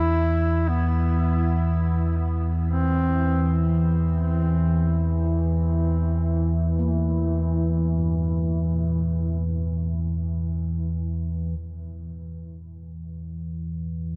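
A deep, ominous drone of detuned, ring-modulated tones rumbles up front from the first second, while a folk-style duduk with a smooth top sings a brief solo melody through shimmer reverb and delay until 3.6 seconds. Very quiet gamelan-type bossed gongs, metallic and bronze with a round, beating tone, play dark arpeggios underneath throughout. This unsettling, desolate stretch of free-time dark ambient music sits in a huge reverberant space.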